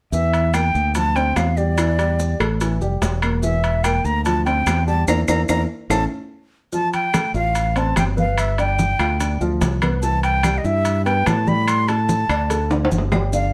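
Lightly reverberant and fiery, this driving Afro-Cuban jazz excerpt is cut from a longer piece. A breathy, bright concert flute carries the melody up front, its straight tone tongued and a little unsteady. Below it, a punchy, direct fingered electric bass holds the low end. A dark, worn baby grand piano comps with short sustain, its action noise audible in an intimate, natural sound. Ringing metal-shell timbales with a vintage, band-limited character, woody claves set close and dry in the background, and grainy, mellow maracas fill out the percussion. The band hits a shared accent at 5.1 seconds, then damped, thick-skinned congas join in the background at 6.7 seconds as the harmony moves through G9, G7 and Cmaj7, and a drum fill at 12.7 seconds sets up the close on D5.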